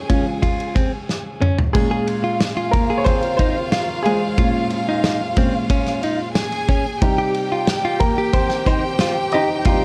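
A dark production with light reverb and studio ambience frames this dramatic, earnest piano-driven pop excerpt at 91 BPM in 4/4, moving from Db to Bbm7 to Cm. A clear, short-sustained baby grand piano sits up front and carries a solo throughout, backed by a loose, mid-forward indie drum kit with dark cymbals and a tight kick that plays a fill at 1.1 seconds. A clean, compressed, direct-recorded electric guitar picks a riff, and a lush, bowed violin section with vibrato and a smooth top carries a second line.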